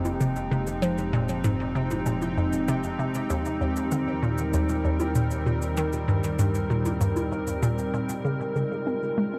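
A straight 4/4 pulse carries this hypnotic, cosmic stretch of sequencer-driven space music, cut from a longer piece. A hollow, nasal square-wave pluck sits up front with a bright, bouncy riff, its chorus and delay trailing into a huge, dark reverb. Beside it, an evolving wavetable pad morphs and warbles through sustained chords over Fm7 and Eb6, then Db6. Underneath, a fat analog bass holds a thick F1 until 8.2 s, and electronic bongos and cabasa add overdriven, small-room grit with delay. A pulsing, tempo-synced texture hovers in the background, its detuned unison softened by chorus. At 8.2 s the music moves into a new section, where a filter sweep plays on the synth arpeggio sound as the pad and pluck carry on to the close.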